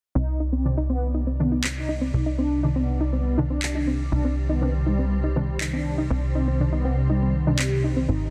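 Hypnotic and cinematic, this melodic techno excerpt in C harmonic minor moves at 121 BPM in a straight 4/4, opening on a Cmadd9 chord as a mellow synth brass melody with phaser and vintage 12-bit sampler grit rides over a lush, warbling unison pad, a soft round pluck arpeggio and a punchy, funky analog bass that sits up front. Filter sweeps run through the arpeggio and pad across the whole passage, while background synth brass stabs enter at 0.6 seconds, a swarming, tense granular drone creeps in at 1.2 seconds, and overdriven electronic handclaps re-recorded in a large room arrive at 1.6 seconds. Light digital ambience surrounds a dense, heavily limited modern master.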